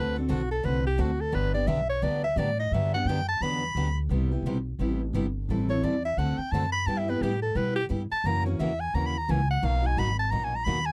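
Swinging and charming, this short excerpt of acoustic string swing in G major moves at a brisk 174 BPM, with a breathy, close-miked soprano saxophone soloing with vibrato and a soft attack across the whole 10.9 seconds. Beneath it, a full-bodied jumbo steel-string guitar, picked on fresh strings with audible finger squeak, carries the accompaniment, while a thumpy, woody upright bass with gut strings plays pizzicato, all three sitting up front. The production is dark and dry, with little reverb and some lossy compression artefacts, as the harmony travels from D7 and Gmaj7 through Cmaj7 and Am7 to F#7 and Bmaj7.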